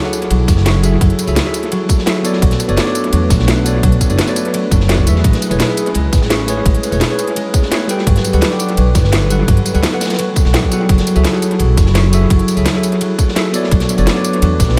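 An echo-heavy, studio-ambient mix carries this uplifting, lush liquid drum and bass excerpt at 170 BPM, where a bell-like tine electric piano and ringing fingerpicked concert harp, both through analog delay, float over an airy, breathy pad with chorus and sidechain pumping, a woody, growly pizzicato upright bass with tube saturation entering at 0.3 s, a tight, up-front electronic kick from 0.5 s, a garage kit of cracking snare, crisp hats and tambourine, and a gritty, saturated breakbeat kit with dark cymbals tucked in the background, all moving through F#m9, Amaj9 and Gmaj7.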